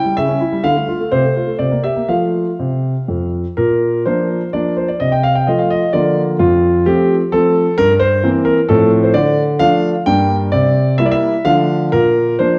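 In a 3/4 at 129 BPM with a supple rubato feel, this graceful, cheerful classical-period piano sonatina passage, cut from a longer piece, opens in F major before moving to Bb major at 3.6 s. A solo concert grand carries the whole 12.6 seconds between F2 and G5, sitting up front with a deep bass, an open tone and long sustain. The production is dark and warm, with a wet recital hall reverb around the instrument.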